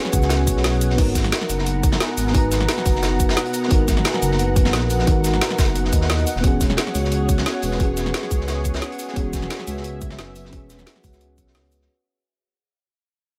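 A deep, rumbling detuned saw bass sits up front in this soulful, lush liquid drum and bass passage at 176 BPM in 4/4, its saturated, beating tone entering at 0.1 seconds beneath chords that move from a rootless E6/9 to G#m9 and back to E6/9. A tight, layered electronic kick drives the groove, joined by an electronic drum and bass kit with a woody snare, bright hats, crash cymbal and shaker, and by a crunchy breakbeat kit whose gritty, medium-tuned snare and hats are saturated, mid-forward and rolled off at the top, with high-pass filtering on the hats, snare and room. Alongside them, a mellow FM electric piano with a round, full-bodied tone and a faint noise layer plays the accompaniment through chorus and delay. A thick, bright unison pad with a slow attack and long release holds sustained chords through chorus and phaser, while a soft-mallet vibraphone adds airy, ringing arpeggios with slow motor vibrato and delay. 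The whole drop, cut from a longer piece, sits in light reverb and begins fading out at 6.4 seconds.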